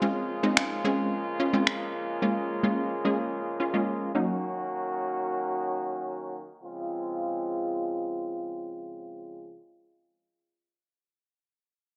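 A detuned, wave-folded sawtooth unison pluck with a punchy, fast-decaying attack accompanies this upbeat, carefree dance-pop excerpt at 109 BPM in Db major until 4.4 s, while layered, tape-tinged electronic finger snaps pop up front briefly from 0.6 s and a vintage French horn section holds soft-attack, lightly vibrato-laden chords through 9.6 s over Dbmaj7, Bbm7 and Ebm7, all set in bright 1980s-style digital production with a filter sweep and a moderate plate reverb.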